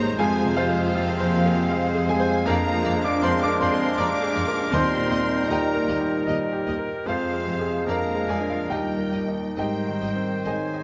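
In a rubato 3/4 at 67-80 BPM, this lyrical, passionate excerpt from a romantic movement sets a bright, brilliant baby grand piano melody up front, joined on the melody by a lush violin section in the background, while oboe, a clear studio violin section, airy flute and clarinet weave second lines, viola section and bassoon fill the accompaniment, mellow French horns and trombones hold very quiet chords, cellos and double basses carry the bass through Fm, Bb7/F and Eb, and hard-mallet timpani sound from 4.7 to 5.8 seconds in a moderate scoring stage reverb.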